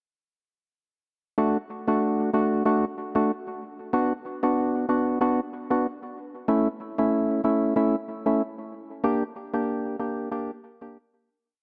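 A percussive organ stab carries this short dancehall piece entirely by itself, entering at 1.4 seconds and playing syncopated chords until 11.0 seconds. Its tone is hollow and dark, with a fast attack that then decays and a noise layer beneath the organ-like body, placed up front and colored by chorus and tape echo. The mood is sunny and summery, with a gentle swing to the groove. The single verse moves from D to B minor, then A, and finally a G minor chord that gives the close a touch of shade. Light reverb and a digital ambience surround the stab, and the whole piece fades out from 9.0 seconds.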